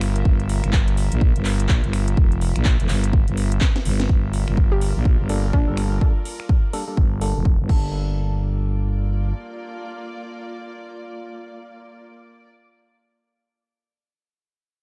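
A swaggering, bouncy bass house excerpt opens on a drop. It starts with a thick, growling FM bass pumping under sidechain, a house kit of cracking snare, metallic hi-hats, crash cymbal, finger snaps and handclaps, and an intimate, softly bowed chamber string section played sul tasto with light vibrato, joined at 0.3 seconds by a punchy electronic kick up front. After a drum fill, the strings fade and a filter sweep runs over the bass from 4.1 seconds, while a hollow, detuned square pluck with chorus and delay sits briefly in the background and a nasal, wave-folded organ stab with delay carries on after the drums and bass stop, all set in a dark, warm production with digital ambience.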